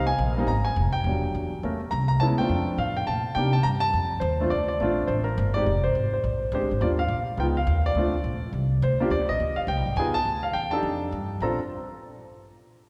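Playful and sophisticated, this brisk swinging jazz excerpt in Bb major at 208 BPM pairs a natural, short-sustained baby grand piano carrying the melody with a woody, pizzicato upright bass, both up front and bathed in a lush church reverb, as the harmony moves through chords like Abmaj7, Dm7, Cm7, F7 and Bbmaj7 before shifting at 6.8 seconds toward Ebmaj7, Db7 and F13 and breaking off at 11.6 seconds.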